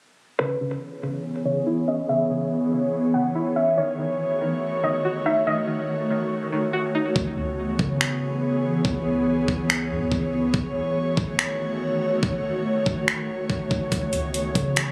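Caught on a phone in a club-like room with compression and a touch of reverb, this hazy, spacious cloud-rap fragment moves with a half-time feel. A soft, round pluck melody and a twangy, bright resonator pluck arpeggio, both chorused, delayed and low-pass filtered under a filter sweep, float over an ethereal, airy pad whose detuned unison chords pump against the sidechain and linger in their own reverb. Once the plucks have stopped, a deep, dark sine 808 bass and an up-front, knocking R&B kit of finger snaps and kick arrive at 7.2 seconds, with the kit's metallic hats held back until 13.9 seconds.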